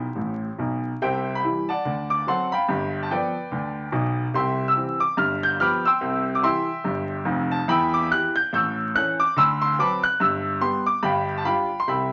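A clear, up-front grand piano opens with a brief fill in the first second, launching a playful, swinging stride jazz passage at 144 BPM in 4/4. Playing solo throughout, the piano covers a broad span from deep bass notes to bright upper-register lines, with a lilting swing on the eighth notes. The harmony starts in C major, moving through D7, G9 and G7 before settling back on C, then shifts toward G major from 7.7 s by way of Em, A7 and D6, landing on G. A wet studio reverb adds a sense of room around the instrument, while a layer of vinyl crackle lends the recording a vintage patina. Cut from a longer piece, this short section runs to 12.1 s.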